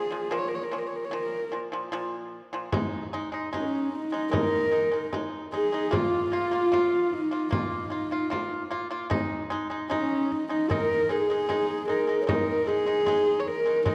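A vast, windswept mood opens this Mongolian folk piece, which moves at an unhurried 75 BPM in a straight 4/4. Up front, a husky horsehead fiddle carries the melody with an airy bow, soft attack, light vibrato and gliding portamento, sounding intimate and close as a single player. Beside it, a mellow, dry pipa plucks percussive arpeggios with fingerpicks, and the harmony moves between Bb5 and Ab5 chords. A compressed, saturated frame drum enters at 2.7 seconds, and a breathy low bamboo xiao joins at 3.5 seconds as a warm second line with gentle vibrato, set in the background. The dark production is bathed in a wet scoring-stage reverb, and the recording is cut from a longer piece.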